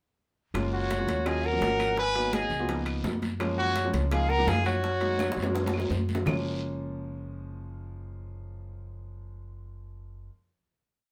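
Over a straight four-beat feel anchored by a woody two-bar clave line, a dark, thumpy upright bass tumbao that anticipates the chords, and background congas, low-tuned bongos, ringing metal-shell timbales and a raspy guiro, this short, sunny and sophisticated Afro-Cuban jazz piece sets a clear, forceful trumpet melody of motif-based phrases against an airy bamboo bansuri harmony line mostly in thirds and syncopated rootless chord stabs from an open upright piano, with a drum fill at 5.2 seconds leading to a held final chord from 6.3 seconds in a moderate studio reverb.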